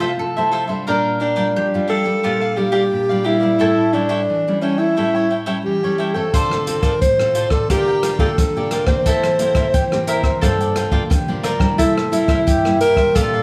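A straight 4/4 samba and choro groove at 88 BPM carries a joyful, lively mood, as an intimate, breathy alto saxophone with vibrato, scooped notes and plate reverb sings the melody up front, a woody, double-strung mandolin plays a second line, a crisp, picked cavaquinho and a fingerpicked nylon-string guitar with finger squeak provide accompaniment, and a dark, smooth open jazz drum kit with a boomy kick, hi-hat and rim click enters at 6.3 s, all set in a small-room ambience.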